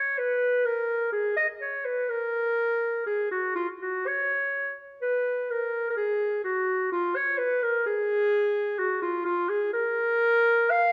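A lush recital-hall reverb surrounds this short passage cut from a longer piece, giving the unaccompanied clarinet a distant, roomy glow even as it sits up front. In a baroque-style classical fantasia, the warm clarinet plays alone from 0.0 to 10.9 seconds, moving in a flowing, introspective line in 3/4 with a free, rubato feel.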